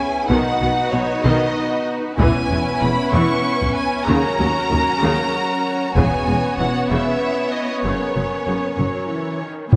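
Epic orchestral film score, triumphant and majestic at a stately 64 BPM in 6/8, with an up-front, focused violin section carrying the melody over a distant, intense second violin line, lush bowed violas, a softly attacked French horn section holding mellow chords, and a cello and expressive double bass foundation entering at 0.3 seconds, before hard-stick taiko drums with a vintage, band-limited tone arrive at 2.2 seconds and a huge sub drop lands at 9.7 seconds, all in a spacious scoring-stage reverb as the chords move from B through E6 and D#m7 to F#.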